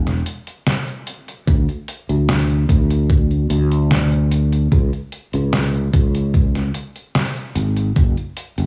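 Hazy and melancholic, this short vaporwave fragment cut from a longer piece moves at a slow 74 BPM in a straight 4/4. A sustaining fretless electric bass carries the low end from the start, its warm, growly tone sitting up front with tube saturation and a subtle chorus, ranging from E1 to D2. A detuned 8-bit digital drum machine enters at 0.1 seconds with hi-hat and a fat, overdriven snare that has a sampler-style character and the feel of being re-recorded in a small room. An overdriven electronic kick drum joins at 1.5 seconds, thumpy and up front, and drops out at 8.1 seconds. The sound is dry and gritty, with a cassette-tape grain and little reverb.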